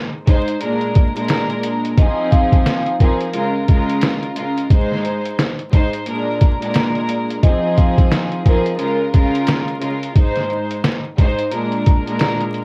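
A bowed string section opens this tough, gritty boom-bap hip-hop excerpt, its reedy gut-string tone carrying a light vibrato through filtering, cassette grain and plate reverb. A compressed, pitched-down sampler-style kit lands at 0.3 s with a thumpy kick, a medium-tuned snare and hi-hat, all in a swung sixteenth feel. From 2.0 s to 9.0 s a soft-mallet vibraphone carries a metallic, ringing melody with slow motor vibrato and tape echo, over chords cycling through Ab, Bb7, Fm7 and Db6, while vinyl crackle and small-room ambience give the cassette-recorded fragment a home-made texture.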